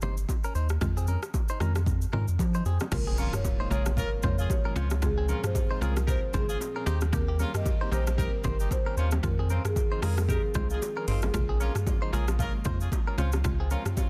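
Afrobeats in F minor at 114 BPM with a swung sixteenth feel, this sultry, hypnotic excerpt rides on a deep-kicked electronic drum kit with metallic hats, a round, dark analog bass up front, soft-handed bongos and congas, a woody chorused synth pluck and a twangy, delayed clean guitar riff, before a marimba melody enters at 2.9 seconds alongside a very quiet impact, a distant, roomy horn section with delay and a breathy, detuned pad with tremolo in the background, all over a Cm7, Fm7, Bbm7, Dbmaj7 cycle in a dense, heavily limited modern master.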